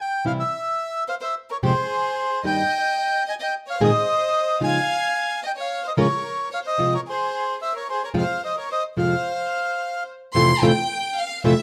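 A reedy, dark bandoneon carries the melody up front in this dramatic, melancholic tango fragment in F minor at a rubato 110 BPM, over bright fingerpicked nylon-string guitar accompaniment and a soft-edged, vibrato-rich chamber violin section bowing sul tasto as a second line, all in moderate studio reverb, until the violins take a solo from 10.3 s on an Fmaj7 as the guitar continues beneath them.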